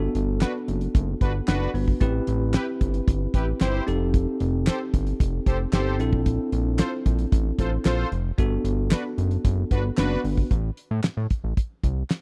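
A dry, close small-room sound frames this funky, late-night early-eighties boogie funk fragment, where a damped, dark drum kit with a fat snare, tight kick, hi-hat and handclaps sits up front beside a thick, saturated, detuned analog bass, while a bell-like tine electric piano chimes over the chords and a brassy, warbling analog synth brass line with chorus adds a mellow vintage color until around 10.2 seconds, before the electric piano drops out at 10.5 seconds for a brief closing turn to A minor.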